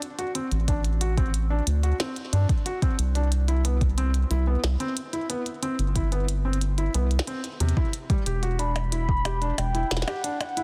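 A round, dark analog bass sits up front in this glitchy, eerie IDM excerpt at 91 BPM, beneath a felt-muted upright piano playing soft, intimate arpeggios with audible action noise and digital delay, a deep tape-toned electronic kick, a glitchy kit of clicky hats, tiny snare and percussion blips, and a velvety, wave-folded synth lead with chorus and vibrato that arrives at 8.6 seconds over chords moving from D7(no3) to C and Asus4, all in light digital ambience and a dense, heavily limited master.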